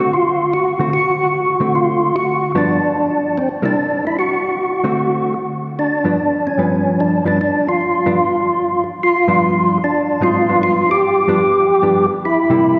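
Swinging and soulful, this jazz excerpt puts a fat, lightly overdriven tonewheel organ up front on the melody, its third-harmonic percussion, key click, chorus vibrato and slow rotary speaker ringing through a cavernous church reverb, while a dark, clean, fingered hollow-body electric guitar supplies compressed accompaniment over dominant chords from the opening to 12.8 seconds.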